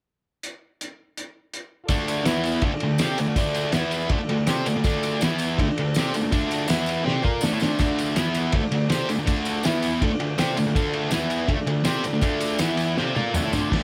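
Garage rock, raw and menacing, opens with a cloth-damped drum kit alone at 0.4 s. It sounds thuddy, muffled and lo-fi, with a fat snare, tight kick and dark cymbals sitting up front. At 1.8 s a vintage combo organ with light vibrato enters in the background, holding reedy sustained chords. At 1.9 s a bright, double-tracked fuzz guitar arrives with a picked, distorted riff that moves between D minor and an E power chord, joined by a jingly tambourine in the background. The piece runs at 162 BPM in 4/4 with a straight feel and is cut from a longer piece. Drums and organ each play fills near 7.1 s and again near the close, all set in a modest small-room reverb.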